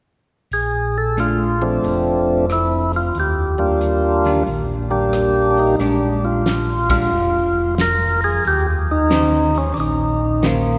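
Soulful and greasy, this swinging soul jazz organ trio excerpt puts a percussive tonewheel organ up front on the melody, its key click and second-harmonic percussion turning in a slow rotary speaker, while a round, dark organ bass with chorus vibrato anchors the low end. A fat-snared soul drum kit with dark cymbals sits beneath, joined at 1.2 s by a clean, picked hollow-body jazz guitar comping in the background. Around the midpoint the harmony shifts to a mixolydian colour, and the band hits a shared accent at 6.8 s, all bathed in a cathedral-like reverb that lends the trio a vast, church-hall glow.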